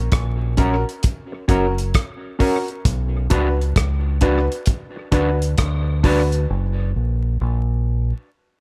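A deep, round fingered electric bass sits up front in this hypnotic, meditative roots reggae excerpt at 66 BPM in B harmonic minor with a swung 16th-note feel, joined by a cloth-damped, thuddy drum kit of kick, hi-hat and rim click, a mellow, clean electric guitar through tape echo, and woody, boxy upright piano stabs over F# and Bm, before the bass carries the break alone from 6.5 seconds, with light reverb and vinyl crackle coloring the sound.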